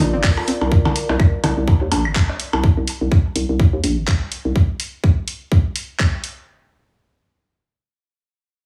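Sparse and clinical, this short cut from a longer minimal techno piece moves at 125 BPM in 4/4 with a swung sixteenth feel, built on a tight, up-front electronic kick, a hollow, bouncy FM bass pumping against it, bright garage hats and handclaps, tape-echoed toms, blips and claves, a twangy string-like resonator pluck heard only in the first 0.5 seconds, a distant, roomy brush kit with its top rolled off, and a warbling, nostalgic lo-fi pad that fades out by 2.6 seconds, all set in digital ambience over a C7 chord with its third omitted.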